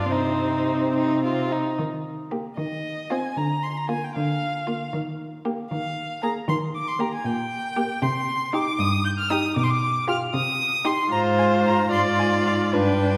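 A string quartet begins together, the first violin singing a focused, vibrato-laden melody high above a warm, even second violin line, a viola accompaniment with a smooth top, and an expressive cello bass that slides with portamento and sits up front. This quick classical-period movement in six-eight has a stormy, restless mood, pushing and pulling with rubato, and its harmony turns darker around 8.0 s. A wet concert-hall reverb surrounds the rich ensemble, and the first violin has a distant quality, in a passage cut from a longer piece.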